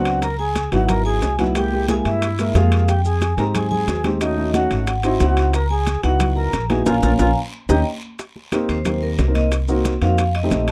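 Sophisticated and sunny, this brisk Afro-Cuban jazz excerpt at 181 BPM sets a ringing, medium-hard-mallet vibraphone melody over a breathy silver flute second line that drops out at 7.8 seconds, a dark, mellow grand piano and thumpy, woody pizzicato upright bass up front, and background bongos, high-tuned congas, raspy guiro and grainy maracas beside saturated metal-shell timbales, with a band accent and drum fill leading into a vibraphone solo at 8.2 seconds in a dry, dark production.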